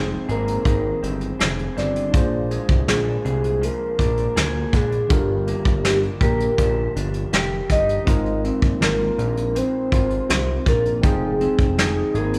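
Bathed in light reverb, this wistful, mellow stretch of indie and bedroom pop sets a round, full-bodied synth lead with a sub octave, chorus and phaser over a barky tine electric piano in the background, a slightly broken-up, lo-fi electric guitar with vibrato through a small old amp, and a fat, detuned analog bass, while a soft brush drum kit with a punchy kick and rolled-off top enters at 0.3 seconds beneath chords moving from Fm7 through Bb7, Gm7 and Ab69 before returning to Fm7.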